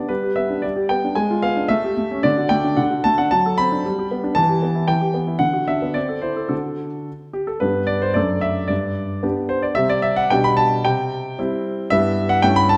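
Elegant and playful, this classical-period piano sonatina moves at 112 BPM in 2/4 with a flexible, rubato feel. A solo concert grand carries the whole piece from 0.0 to 12.8 seconds, its tone warm and natural with a deep bass, ranging from F#2 up to B5 and sitting up front in the sound. The music opens in D major and settles into G major from 3.3 seconds, with harmony passing through chords such as G#dim7, A7, D7/F# and Em before arriving on D. A second section begins at 7.6 seconds, circling around G and touching C and Em/G. A wet recital hall reverb lends the piano a gentle sense of space, and the passage is cut from a longer piece.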